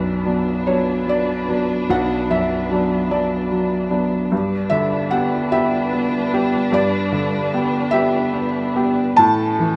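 A felt-muted upright piano and a dark chamber string section open together in this melancholic, fragile neoclassical passage in B minor, moving in a slow, rubato 6/8 at 50 BPM and tuned to A4 = 438 Hz. The intimate, mellow piano sits up front as accompaniment while the bowed strings hold sustained chords further back, their expressive vibrato lending a shadowed depth. The harmony shifts from B minor to G at 4.3 seconds and reaches A at 9.2 seconds, all carried by a wet room reverb that suggests players performing live together.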